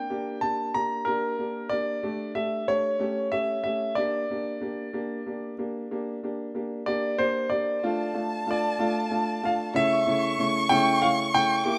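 Melancholic and aching, this short excerpt from a six-eight pop ballad in D minor moves at a slow 62 BPM with a straight feel, cut from a longer piece. A clear concert grand piano carries the melody from the start, up front and intimate, its polished tone showing audible action noise, deep bass and long sustain. Beneath it, an upright piano plays the accompaniment, its sound woody and boxy. At 7.8 seconds a chamber violin section enters with a second line between A5 and D6, bowed with expressive vibrato and a smooth top, playing through to the close at 11.8 seconds. The harmony moves from Gm through A7sus4 and A7 to Bb6, then settles on Dm and A/C# as the violins arrive. A lush hall reverb with a 2.0-second decay surrounds the parts, though the mix keeps the rough character of a home demo.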